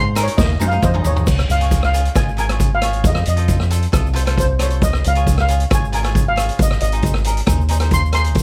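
Sunny and bouncy, this short calypso excerpt in Db major moves at 135 BPM, with a mellow, shimmering steel pan carrying the melody over crisp picked cavaquinho, an up-front fingered electric bass with an envelope filter, a boomy street-band drum kit with dark cymbals that enters at 0.2 seconds and plays a fill from 0.4 seconds, and a grainy tube shaker in the background, all in light reverb.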